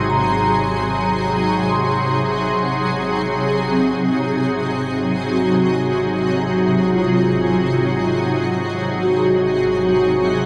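A slow, unhurried three-beat pulse with a straight feel carries this luminous, peaceful ambient piece, a brief cut from a longer work that rests on a single Ab7 chord for its 10.5 seconds. Up front, a bright, shimmering pad holds sustained chords with a slow attack and long release, its detuned, granular tone lifted by chorus and an octave-up shimmer reverb. A vibraphone played with soft mallets spins arpeggios in a mellow, ringing voice with medium motor vibrato, trailed by delay and its own shimmer reverb. In the background, a bowed symphonic double bass section holds a low Ab with a biting, intense edge and light vibrato, fading out across the whole passage. A lush hall reverb soaks the mix, giving the piece a dreamy, ethereal glow.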